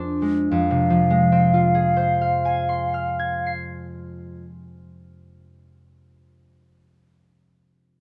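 A fingerpicked concert harp rings out on a Bb9/F chord and settles onto F minor as a hollow, pure silver flute enters at 0.5 seconds with a tongued, vibrato-tinged F5 that lingers until 3.5 seconds, giving this wistful, mysterious fragment of an impressionist classical duo a slow, rubato 6/8 pulse at 34 BPM, with both instruments up front under close, detailed microphones and light reverb.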